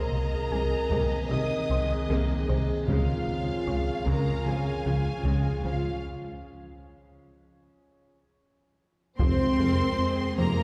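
Heard from further back in a reverberant concert hall, this tense, relentless passage from a hybrid orchestral and electronic film score moves at 76 BPM in a straight 4/4. A rich, lush violin section carries the melody with vibrato, while a second, smooth-topped studio violin section traces another line above a close viola section and a focused cello section in the background. A mellow, distant French horn section holds sustained chords beside an eerie, metallic FM drone that warbles with chorus and its own reverb, and a rubbery, hollow square-wave bass drives a bouncy riff from the start. A very quiet, nasal analog pluck adds arpeggios, a dark double bass section sits deep underneath, and a taiko ensemble struck with heavy sticks enters at 0.9 seconds, with a break from 6.0 seconds and a drum fill before the harmony shifts to F minor at 9.2 seconds. At that moment a dark trombone section and a mellow tuba join for the closing chords.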